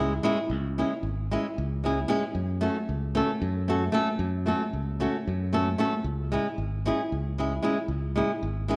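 The recording sounds like a worn, warbling cassette, its pitch drifting under the wash of a reverberant recital hall. Within that haze, this brief cut from a longer Balkan wedding-band folk piece moves in a straight 7/8 with a bittersweet, restless mood, tuned to A4 = 437 Hz. A fingerpicked acoustic flamenco guitar sits up front throughout, bright, with audible finger squeaks as it carries the accompaniment. Beside it, an up-front fingered electric bass plays a direct, growly low line from the start until 8.7 seconds. The harmony moves from C#m to F#m at 2.3 seconds and returns to C#m at 6.0 seconds.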